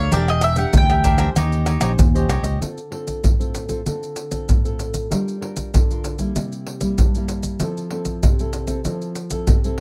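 A straight samba pulse from deep surdo, maracas, pandeiro and tamborim, played with hard hands and sitting close, dry and up front, drives this lively, yearning samba-choro fragment cut from a longer piece. A round, double-strung mandolin with slapback echo leads at the opening over crisp picked cavaquinho and a growly, punchy fingered electric bass. After the mandolin drops out at 1.6 seconds and the cavaquinho and bass stop at 2.6 seconds, a dark, fingerpicked classical nylon-string guitar, present from the very start, carries the Dm7, Gm7, C7 and Fmaj7 changes with the percussion through to 9.8 seconds, all set in light reverb with close, detailed miking.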